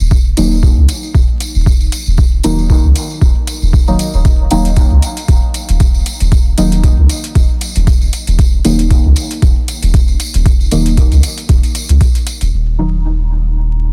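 Hypnotic and nocturnal, this dub techno excerpt rides a swung 4/4 groove on a single minor chord, with an overdriven, deep electronic kick up front and a round, soft sub bass that pumps against it. Dark, wave-folded chord stabs drift through chorus, phaser and dub echo, while gritty metallic hi-hats and a jingly acoustic tambourine add sparkle above. The dense, heavily limited master is dry and dusted with vinyl crackle. The kick drops out just after 12 seconds and the hats and tambourine near 12.5 seconds, the stabs linger until 13 seconds, and the bass carries on alone to the end.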